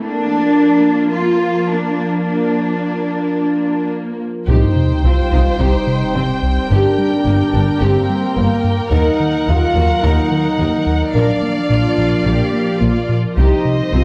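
A cinematic, hybrid orchestral and electronic film score in C minor at 108 BPM in a straight 4/4, this excerpt of a longer piece feels tense and relentless. It opens with a lush, bowed viola section and an up-front cello section carrying the bass, beneath a warbling, lo-fi tape-like pad whose detuned, ring-modulated chords sit in chorus and built-in reverb with a nostalgic, dark cast. At 4.5 seconds a sub drop hits in the background and the texture thickens: a distant violin section takes the high melody while a second violin section with a soft attack plays an expressive line beneath it. A tight, roomy French horn section holds sustained chords, a round analog bass drives a deep riff with a fast attack, and a chamber double bass section adds bowed weight in the background. The chords move from Cm through Gm, Ebm and Bb before returning to Cm, and the whole ensemble sits in a moderate scoring stage reverb.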